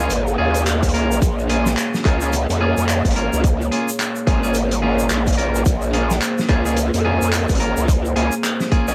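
A dark analog pad anchors this gritty, playful glitch hop excerpt from the very start, holding sustained Bbm7 chords in Bb minor with a deep, moody, detuned tone that is thickened by chorus and pumped by sidechain. Alongside it from the first moment, a clean electric guitar plays bright, twangy stabs that also pump and trail off into dub echo, while a growling, aggressive bass wobbles underneath with a saturated, overdriven edge and sits up front in the mix. At 0.1 seconds a crunchy breakbeat kit of handclaps, hi-hat and a high-tuned snare joins with a dark, rolled-off top, together with a grainy tube shaker. A tight, layered electronic kick drum arrives at 0.8 seconds, punching forward at 108 BPM in 4/4 with a swung sixteenth-note feel. Light reverb and a coat of vinyl crackle give the whole short clip a gritty texture.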